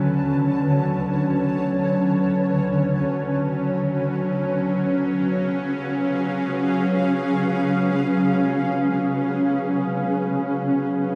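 A hazy, cavernous concert-hall wash surrounds this reflective, melancholic ambient fragment in free time, where a cloudy, detuned granular pad sustains chords from Bm7/D to C#7 as it fades in over 11.2 seconds beside a tense, bright, string-like bowed drone with vibrato and a breathy noise layer.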